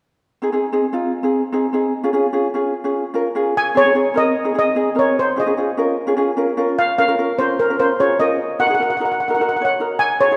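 A straight 4/4 pulse at 149 BPM drives this sunny, bouncy calypso fragment, cut from a longer piece. A thumb-plucked acoustic ukulele opens alone at 0.4 seconds, its light, warm chords sitting up front and moving from Ab to Db. At 3.6 seconds a steel pan takes the melody, a double seconds instrument struck with soft rubber sticks that gives it a mellow, shimmering, metallic voice, also placed close to the listener. Beneath it the harmony passes through Ab, Bbm7/Db and Ebm, and both parts carry on until the fragment ends at 10.4 seconds. A generous concert hall reverb surrounds the pair, lending the breezy tune an open, airy glow.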